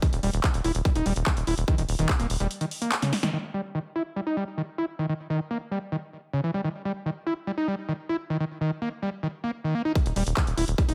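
A squelchy, resonant acid line screams through this driving, psychedelic trance excerpt at 145 BPM, distorted and chorused with a cassette-tape grit, delay and sidechain pumping, over a tight, up-front kick, an overdriven techno kit of handclaps, hi-hat and punchy snare, and a plucky sawtooth sequencer bass in a digital ambience. The kick drops out at 2.5 seconds, and a drum fill with a band accent closes the opening section at 3.3 seconds. The acid riff then carries on by itself until the drums return at 10.0 seconds, joined by the bass a moment later.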